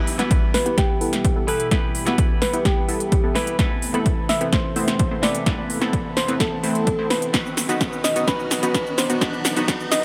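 A punchy, overdriven electronic kick sits up front in this emotional, euphoric festival progressive house build-up, entering at 0.3 s beside a layered big-room drum kit of crisp hats, shaker and a punchy snare, with both drum parts carrying the roomy character of a large space. Underneath, a detuned supersaw stab plays an airy, evolving riff from the background, its low-pass filter sweeping throughout while sidechain pumping and digital delay shape its tail. A bright, twangy clean electric guitar picks out compressed accompaniment with subtle chorus and delay, and a thick, warbling unison pad holds sustained chords with vintage 12-bit sampler grit, also pumping against the beat. From 0.5 s, a round, gentle, keys-like FM lead carries the melody with quickly decaying notes, chorus and delay. A very quiet riser and a running drum fill push the section forward over a harmony that moves from Em to Amadd9/E and then B/E, all set in light reverb and digital ambience in this passage cut from a longer piece.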